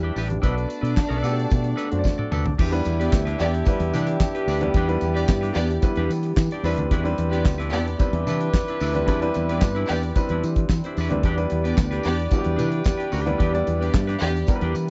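A dry, damped 70s drum kit with a fat snare and tight kick drives this glamorous, danceable disco piece at 111 BPM in E minor, joined by punchy fingered electric bass up front, a baby grand piano with audible action noise, dark clean picked electric guitar, a sul tasto studio string section, a classical-style French horn section holding sustained chords, jingly tambourine and very quiet vintage congas, while a distant, roomy pop-style horn section adds tight stabs from 2.6 s after a drum fill, all in a dry, dark production.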